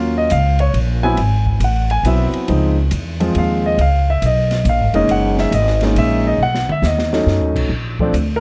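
A polished, present baby grand piano carries the melody in this relaxed, sophisticated jazz piano trio, ringing with long sustain as it moves through lush changes from Ebm9 and Ab7alt to Dbmaj9, Gb69 and B9 before landing on Bb. The tune swings in 3/4 at 138 BPM, and the up-front pizzicato upright bass sits beside the piano with a woody, growly, thumpy tone from its steel strings. The open jazz drum kit enters at 0.3 seconds, sitting lower in the balance, with dark cymbals, a high-tuned snare and a boomy kick, all roughened by a vintage 12-bit sampler grit. A drum fill from 6.4 to 7.3 seconds rounds off the phrase. Moderate studio reverb and a dark, mellow production give this short cut from a longer piece an intimate, late-night sophistication.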